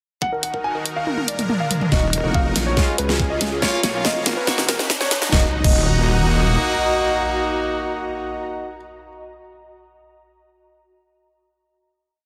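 A dark, mellow grand piano opens this heavy, chaotic wobble dubstep piece at 0.2 s with a repeating sixteenth-note riff over a pedal note, softened by a low-pass filter and tape echo. Alongside it, a lush, detuned supersaw pad pumps under sidechain, and a knocking electronic kick sets a half-time pulse at 141 BPM in Eb minor. A dubstep kit adds a huge, up-front snare, hi-hats, toms and crash, and a drum fill carries the intro into a build at 1.9 s. There, a filter sweep works over the piano, a bright brass section fires sparse, echoing rootless stabs, and a saturated, sawtooth wobble bass with chorus and overdrive takes the low end, briefly answered by a nasal vowel-sweep wobble bass. Midway through the build, very quiet riser and impact effects and an ethereal, airy pad with slowly shifting chords slip in as the harmony moves on from Db to Bbm and Abm7. At 5.3 s the music settles on a final Ebm chord, with piano, brass and pads ringing on in a moderate plate reverb after the drums and basses stop.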